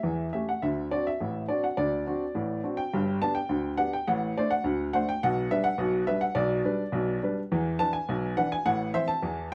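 Jaunty and lively, this short ragtime fragment is cut from a longer piece and set in a straight two-beat metre. A lone upright piano carries everything from start to finish, ranging from deep bass notes up into its upper register. The instrument sounds woody and natural, placed up front with an intimate closeness that lets the clatter of its action come through. Notes decay quickly, and a moderate small-room reverb adds a touch of space around them. The harmony opens on dominant seventh chords, settles onto G at 2.9 seconds, and closes on A minor at 8.7 seconds.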